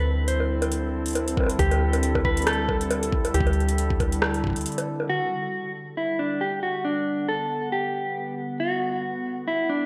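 Bathed in a wet recital-hall reverb with a big arena sound, this wistful, intricate IDM excerpt at 137 BPM, with a swung 16th feel in G major, pairs an up-front, clean, dark mellow electric guitar melody through digital delay with a warbling, nostalgic, lo-fi tape-like pad of chorused sustained chords. Beneath them sit a soft, round woody FM bass that stops at 4.7 seconds, a booming, tape-warm analog drum machine of bongos, metallic hi-hat and rim click under low-pass filtering, and a deep electronic kick entering at 1.4 seconds. A brief break then gives way at 5.1 seconds to a shift from D9sus4 to Gmaj9 carried by the guitar and pad.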